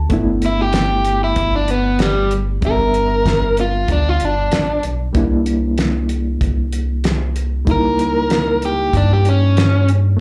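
A reedy electric piano with a fast tremolo and a deep, sine-like sub bass doubled at the octave open this short, swaggering soul blues cut from a longer piece, with a cloth-damped, thuddy drum kit joining on hi-hat, kick and snare a moment later. The groove sits at 95 BPM in a straight 4/4, the fat snare and tight kick sounding acoustic and small-roomed, their top end rolled off, with a touch of slapback echo. From 0.5 seconds an overdriven electric guitar takes the lead, its picked, gritty solo riding up front between G3 and Bb4, dressed in plate reverb and slapback echo. Beneath it the electric piano stays clean and direct in its own plate reverb and slapback, while the full, fast-attack bass holds down the bottom with sustained weight. The harmony moves from Gadd9 to C9 at 5.1 seconds and then to C#dim7, all heard as a live gig through the venue's PA with a light club reverb.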